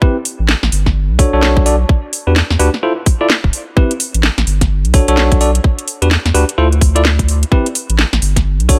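A bell-like tine electric piano plays bright stabs through a low-pass filter and dub echo, its filter sweeping across the whole 8.8-second excerpt as minor chords coloured with ninths pass by in this late-night, bouncy two-step garage groove with a shuffling swing. A tight electronic kick starts at once, joined at 0.3 seconds by a garage kit of cracking snare and metallic, tape-warm hats. A deep, thick, saturated sub bass enters at 0.4 seconds. The mix is dry and up front.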